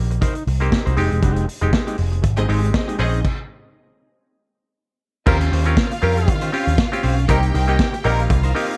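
Disco with a glamorous, driving feel, cut from a longer piece, in which a punchy vintage drum kit with dark cymbals and an up-front, envelope-filtered picked electric bass push along a nasal, hollow clav and a twangy, slightly broken-up electric guitar, while a lush, distant string section enters at 2.4 seconds, a stop falls from 3.2 to 5.3 seconds, and a present horn section adds stabs from 5.3 seconds, all set in a dark, small-room production.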